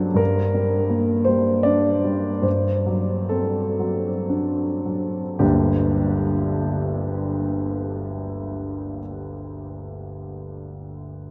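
A clear grand piano sits up front in this short romantic character piece for solo piano, its vintage tone carrying a long sustain across a range from G1 to D5. The mood is passionate and stormy, set in G minor and tuned to A4 = 439 Hz, with a free rubato feel in 3/4 time that moves between 51 and 87 BPM. Over the first 5.4 seconds the music slows down as the harmony passes from G minor to D7 over G. At 5.4 seconds a new section begins back on G minor and runs to the end at 11.3 seconds. A huge, wet reverb places the piano in a vast, echoing space, and the recording is cut from a longer work.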